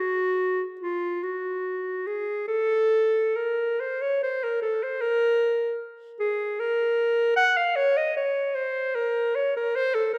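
Set in a moderate concert hall reverb, a lone clarinet sits up front with a clear, classical tone, its phrases lingering in the room's natural decay. This short classical fragment, cut from a longer piece, moves in a free, expressive 6/8 with uneven beats and rubato. The clarinet stays between F4 and Gb5 across its 10.2 seconds, creating a lonely, meditative mood.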